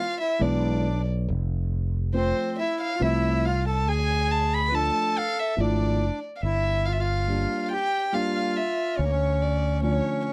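Klezmer in a straight 3/4, soulful and bittersweet, cut from a longer piece and gradually speeding up, with a dark, airy-bowed violin singing the melody up front over a reedy, hollow accordion second line, a woody, boxy upright piano with audible action noise, and a punchy fretless electric bass, all in a dry, close 1970s-style studio sound with light reverb, as the harmony moves from a D mode into a G mode at 6.4 seconds.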